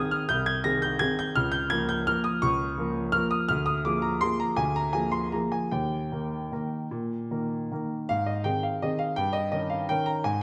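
A warm, smooth grand piano sits up front in a moderate recital hall, its reverb lending a soft halo to a vintage-toned recording that is cut from a longer piece. This is a classical piano waltz in 3/4 and Ab major, elegant and playful in mood, with a rubato feel that lets the tempo float between 146 and 182 BPM. The solo piano spans a broad register from C2 to Bb6, carrying the whole harmony and melody itself across the 10.4 seconds. The opening passage moves through Ab/C, Bbm/Db and Bb7/D before settling on Eb. At 8.1 seconds a new section begins on Ab and turns toward Eb7/G, pointing onward as the clip ends.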